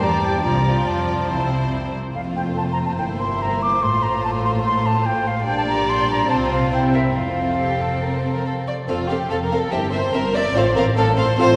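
A lively, spirited classical-period movement for symphony orchestra opens at once with the full string body and a concert flute, moving at a quick 143 BPM in a straight 4/4 in F major. The violins carry the melody with a soft, intimate sul tasto tone and warm vibrato, while a second violin line and the violas fill in beneath with the same close, bowed warmth. Cellos and double basses anchor the bass with a dark weight, the cellos adding a woody grain. Above them the flute sits up front with a pure, straight tone and crisp attack, playing its own second line until 8.7 seconds. At 8.9 seconds a mellow French horn section enters in the background with sustained chords, as the harmony settles on C7/G and F/A. A church-like reverb with a long tail surrounds the ensemble, and the passage is cut from a longer piece.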